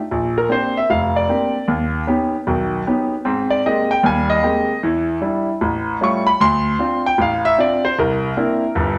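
Relaxed and playful, this short cut from a longer solo jazz piece swings along at 153 BPM in 4/4, its eighth notes carrying a gentle lilt. A lone grand piano carries everything, sitting up front with a clear, present tone and long sustain, ranging from a deep F1 up to a bright C#6. The harmony moves through rich, colorful chords, opening on Bb69 and passing through Ebaug7 and Abmaj9 before a quicker turn through Em7, Aaug7 and Dm7, coming to rest on C9 at 8.0 seconds. The augmented chords lend a sly, wandering lift to the changes. A wet studio reverb gives the piano a sense of space, with the sound lingering in the room around each chord.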